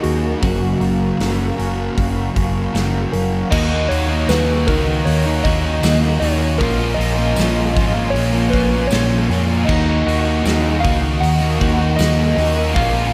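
Hazy and wistful, this shoegaze and dream pop excerpt drifts at 78 BPM in 4/4 over a chord movement from F#maj7 through D#m7 and A#m7. A gentle, warbling FM synth lead carries the melody with chorus and tape echo over a swirling phased sawtooth pad, while a twangy, very quiet clean guitar plays arpeggios and a round, dark hollow-body bass sits up front. Behind them, an overdriven guitar with reverse reverb and a thick fuzz guitar drive riffs, joined at 3.5 seconds by a bright double-tracked distorted guitar, with a punchy big-room drum kit, a jingly tambourine entering at 4.3 seconds, and a lush hall reverb.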